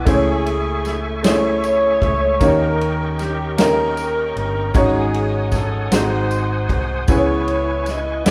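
A roomy studio sound, with a moderate reverb around a band playing live together, opens this short slow gospel passage in a straight 6/8. The mood is soulful and solemn. A mellow, distant horn section carries the melody with light vibrato and a punchy pop-style ensemble attack. A clear concert grand with a worn character and deep low end provides the accompaniment, while a reedy tonewheel organ holds sustained chords behind it, lightly overdriven, with key click, chorus vibrato and a fast rotary speaker. Underneath, a dark, round hollow-body electric bass played with the fingers anchors the low register, and from 0.1 s a natural-sounding acoustic kit with a punchy kick, medium-tuned snare and ride cymbal enters together with a jingly tambourine tucked close and dry in the background. The harmony moves from Amaj7/C# through D#7 and a G#7sus4 resolving to G#7 before settling on C#m7 near the close at 7.1 s.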